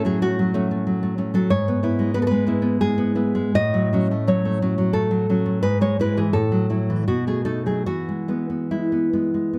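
Close, detailed microphones and light reverb place a full-bodied, up-front nylon-string guitar in this nostalgic, tender romantic piece for solo classical guitar, fingerpicked in a rubato 3/4 at 70-94 BPM in E major, with audible finger squeak as F#m/A and E/G# harmonies give way to B7 and settle on E at 7.9 s before the 9.6-second fragment of a longer work ends.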